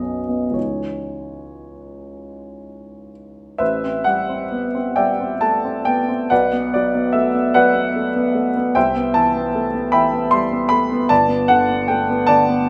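A lone grand piano opens this brief passage, cut from a longer piece of impressionist classical solo piano, with a Badd9 chord that gives way to C#madd9 to set up a mysterious, nocturnal mood in C# minor. The tempo is slow and elastic, roughly 37-52 beats per minute in a rubato 6/8. At 3.6 seconds the harmony shifts into A dorian, drifting through Am11, Bm7, Cmaj7 and finally Gadd9. The piano sounds warm, present and up front, spanning from G1 in the deep bass to C6, its long sustain letting each chord linger. A wet stone room reverb wraps the instrument in a moderate ambience, and the piano, tuned slightly low to A4 = 439 Hz, plays on until 12.7 seconds.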